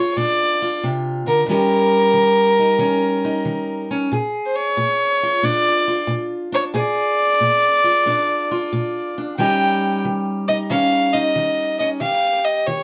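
A moderate studio reverb gives this short cut from a longer acoustic country blues performance a snug, roomy feel, with both players sitting up front. Two musicians carry the whole 12.8 seconds together at a swung 91 BPM in 4/4, the mood soulful and rollicking in Bb mixolydian, tuned to A4 = 443 Hz. A single bowed fiddle takes the melody between Bb4 and G5, its gut-string tone nasal and reedy. Beneath it, a fingerpicked steel-string parlour guitar supplies the accompaniment from Bb2 to Ab4, its voice dark and boxy. The harmony moves between Bb7 and Eb7, shifting to Eb7 at 1.5 seconds, returning to Bb7 at 4.1 seconds and landing on Eb7 again at 9.4 seconds.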